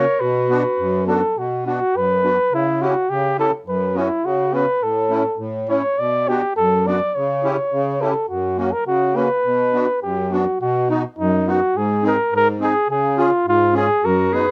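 A bouncy 2/4 pulse at 104 BPM drives this jolly alpine folk dance-band excerpt, cut from a longer piece and played with a straight feel. Up front, a mellow flugelhorn carries the melody throughout with a light vibrato and a smooth top, phrased in a classical style. Beside it, the musette accordion supplies the accompaniment, its reedy, shimmering musette tuning giving a dark yet smooth bed under the tune. A bright clarinet adds a brief second line at the very start and returns only near the close, at 14.0 seconds. The harmony moves through B minor before shifting to B major at 10.6 seconds for the final stretch. Close, detailed microphones and a light reverb keep the small band clear and intimate.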